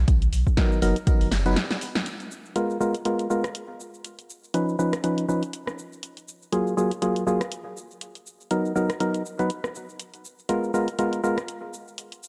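A hollow, organ-like stab with chorus and analog delay sits up front through this hypnotic deep house excerpt at 121 BPM in G# dorian, pumping against the sidechain as chords move from Bmaj7 through G#m69, C#9 and F#maj9, and a filter sweep works on it from 2.1 seconds onward. At the start, a round sine sub bass and an overdriven, punchy kick with 12-bit sampler grit play briefly alongside a very quiet acoustic tambourine and snare, before a short break and drum fill lead into the longer section. A tape-warm analog drum machine with hi-hat, rim click, shaker and snare carries the swung 16th-note groove until 12.3 seconds under light digital reverb.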